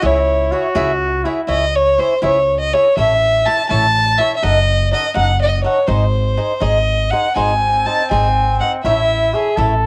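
Rubato phrasing sways loosely over a 6/8 metre in this proud, festive mariachi fragment, cut from a longer piece of Mexican folk music. A single bowed violin carries the melody up front from the start until 9.5 seconds, its smooth, even tone shaded with vibrato and a cassette-tape colour. A mellow, punchy trumpet in a classical style plays a second line, sounding distant and roomy, heard briefly at the opening and again from 7.4 seconds to the end. Beneath them, a picked acoustic cavaquinho gives crisp accompaniment while a woody pizzicato upright bass with steel strings sits up front. Moderate spring reverb and small-room ambience frame this homely cassette recording.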